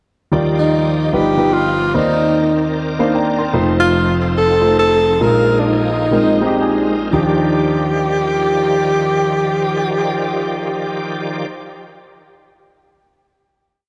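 Reverent and jubilant, this short uptempo gospel piece in Eb major swings in 4/4, pairing a warm concert grand piano pushing drop2 chords with grace notes and short fills, a bright, shouting tonewheel organ holding sustained pad chords through a slow rotary speaker and chorus vibrato, and a breathy tenor saxophone up front carrying a motif-based melody of call phrases with scooped notes and delay, all soaked in lush hall reverb as the breakdown slows from 3.5 seconds before settling on a final Ebmaj9 chord at 7.1 seconds.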